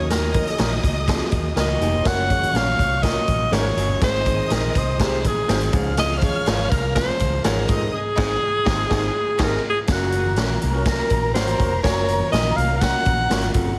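A breathy, up-front alto saxophone carries the melody with vibrato and scooped notes over an uptempo 1960s-style soul groove at 123 BPM, its line echoed by analog delay. Lush, distant strings with portamento add a second line, while a gritty, saturated garage drum kit, a round foam-muted bass, a smooth baritone saxophone riff, mellow background piano, very quiet congas and twangy guitar stabs with chorus fill out the danceable arrangement in Ebm moving through Gb, Ab and Db. The band hits an accent from 7.9 to 9.9 seconds before a new section begins, all set in a small room with a heavily compressed, radio-like sound in this cut from a longer piece.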